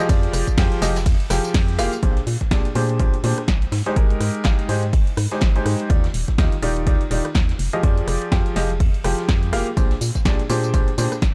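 A clear, worn grand piano riff sits up front, sidechain-pumped through a low-pass filter and analog delay, in this energetic, bittersweet piano house passage at 124 BPM with swung 16ths, over a hollow, dark, organ-like FM bass that also pumps, a punchy electronic kick, an analog drum machine adding hi-hat, ride, rim click, snare and tambourine, and a smooth brushed jazz kit tucked in the background, captured in a dry, gritty small-room recording whose opening 2-second drop on Fmadd9 gives way to chords moving through Bb13, Abmaj7 and Ebmaj9 before returning to Fmadd9 and Bb13.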